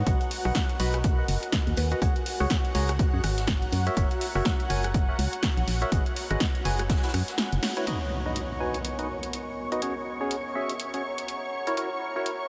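Piano house at 123 BPM in B major, feel-good and uplifting, with a swung 16th-note lilt and a dreamy mix soaked in a huge ambient reverb. An up-front, tape-warm electronic kick and a punchy, overdriven analog drum machine with hi-hat, rim click and snare drive the groove, while a very quiet, distant jazz brush kit adds roomy hi-hat and snare beneath them. A dark, hollow FM bass with an organ-like bite sits up front, and a percussive organ stab riff with chorus and analog delay pumps against the kick alongside a silky, string-like analog pad with ensemble chorus and vibrato. Deep in the background a warbling, nostalgic lo-fi tape pad adds detuned vintage haze, and a woody, mellow mallet-like pluck makes a brief, very quiet appearance at 1.8 s. The chords move from B through C#sus4, F#7 and G#m7 to F#7sus4, and after the kick drops out at 7.4 s a drum fill and band accent lead into an electronic impact at 7.9 s as the progression restarts on B.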